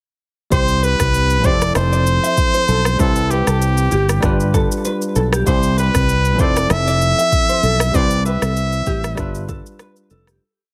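A heavily compressed, radio-like sound with light reverb frames this sunny, romantic afrobeats piece in a lightly swung 4/4, where a brilliant, forceful trumpet with vibrato sings hook phrases up front over a punchy, round fingered electric bass with slides, held bell-like chords with grace notes from a tine electric piano, a dark, clean electric guitar figure in the background dressed in lush chorus and tape echo, and a produced afro-pop kit of soft kick, syncopated rim clicks and shaker, before the short piece fades out from 7.9 seconds.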